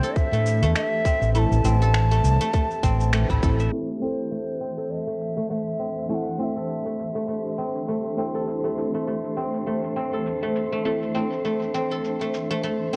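A breathy, bright ney melody with vibrato opens this hypnotic, meditative organic downtempo piece in A minor at 101 BPM, over a silvery, ringing guzheng arpeggio, soft detuned chord stabs with chorus and sidechain pumping, and a cloudy, evolving granular pad. Gritty sampled cabasa and finger snaps sit low beneath a tight electronic kick and a dark, round fretless bass that drive the swung groove until 3.7 seconds, when filter sweeps on the guzheng and pad take over. An airy, wind-like tuned noise drifts in at 5.3 seconds, and the whole fragment carries the worn, warbling pitch drift of old cassette tape.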